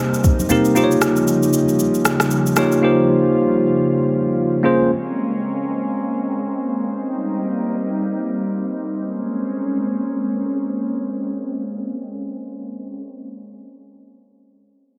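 Amapiano at 116 BPM in Bb dorian with a swung sixteenth feel and a late-night, soulful mood, cut from a longer piece: a bright, bell-like tine electric piano plays clean accompaniment until 4.9 s, an electronic drum kit of soft kick, rim click and shaker, joined briefly by warm background congas, falls away by 2.8 s, and an airy, breathy, detuned pad with chorus sustains chords through to 13.1 s, while a filter sweep spans the opening section and a moderate plate reverb adds space.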